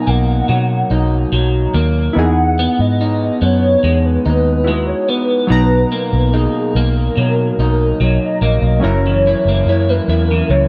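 A hollow, woody clarinet-like synth lead with vibrato sings over a slightly broken-up electric guitar through a small old amp with warbly chorus and round analog keys, joined at 0.1 s by a dark, foam-muted fingered bass in this nostalgic, laid-back indie pop excerpt at 72 BPM in B major, moving through Bmaj7 and Emaj7 before turning to F#7 at 8.8 s, all with little reverb.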